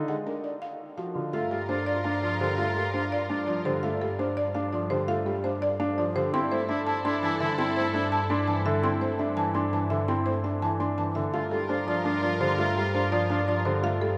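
A polished grand piano accompaniment and dark, mellow baby grand arpeggios open this meditative, hypnotic minimalist classical pattern piece in 7/8 at 336 eighths per minute in G dorian, joined almost at once by a woody, buzzing marimba melody struck with hard mallets, while from 1.3 s a smooth, bowed double bass section holds a low G and a clear oboe second line with light vibrato and rich sustained string chords appear in three brief passages, moving from Gm9 to Dsus2/G and back, within a vast, echoing space of huge ambient reverb.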